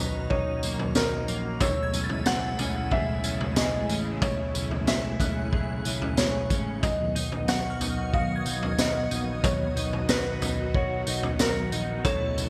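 Dream pop excerpt at 92 BPM in 4/4, blissful and floating, where a soft felt-muted upright piano carries the delayed melody over sawtooth string-machine cellos with ensemble chorus, slightly broken-up arpeggios from an electric guitar through a small old amp with analog chorus and delay, a round, foam-muted picked bass in the background, and a shimmering, warbling FM bell with chorus and delay, while a gritty, boomy garage drum kit with high-tuned snare, tambourine, toms and gated reverb joins up front at 0.3 s, all moving from Bmaj7 to Amaj7 to B in a bright 1980s-style plate-reverb production.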